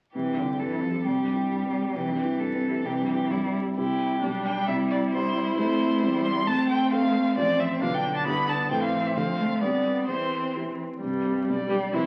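Graceful and lively, this quick classical-period piano quartet movement in C major at 133 BPM sets a clear, smooth violin melody up front over a dark, mellow baby grand with audible action noise and a distant, expressive cello second line with portamento, while a soft-attacked viola joins the accompaniment at 3.8 seconds, all heard through wet studio reverb and the crackle of a very old 78 rpm record in a short cut from a longer piece.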